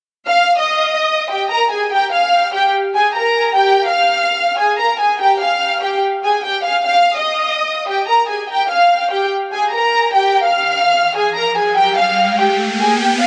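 A lush, distant violin section opens this dark, menacing hip hop excerpt in a half-time feel, its bowed melody carried with vibrato and a soft attack through a low-pass filter and analog delay, alternating between F9sus4 and Fm in an echo-heavy mix with light reverb until an electronic riser enters at 11.3 seconds.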